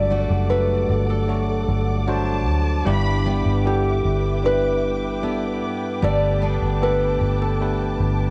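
Pop ballad at 76 BPM in G major, tender and heartfelt, with a small, fingerpicked nylon-string guitar carrying the melody over bell-like tine electric piano and a round, punchy, foam-muted electric bass sitting up front. A dark, woody studio string section holds lush bowed chords while a full-bodied steel-string acoustic guitar picks arpeggios in the background with tape echo and audible finger squeak, and a distant symphonic violin section adds a brief, smooth second line from 2.1 to 3.5 s. The harmony moves from D to Em7/G to Gadd9 in this home recording on cassette with light reverb, where most parts carry a tape coloring.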